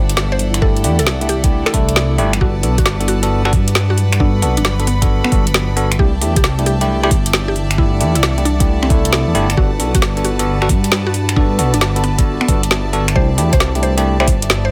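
Lightly reverberant, this sunny, soulful two-step UK garage excerpt in G major swings at 134 BPM over C69 and Gmaj9 chords, carried by an up-front, rumbling, saturated detuned saw bass, a knocking electronic kick, and an up-front garage kit of finger snaps, metallic hats and a woody snare, while bright, bell-like electric piano stabs with digital delay sit beneath a round mallet-like synth pluck melody with chorus and delay in the background, clear, earthy violin chords pumping with the sidechain, and a very quiet, cloudy granular pad drifting in at 0.3 seconds.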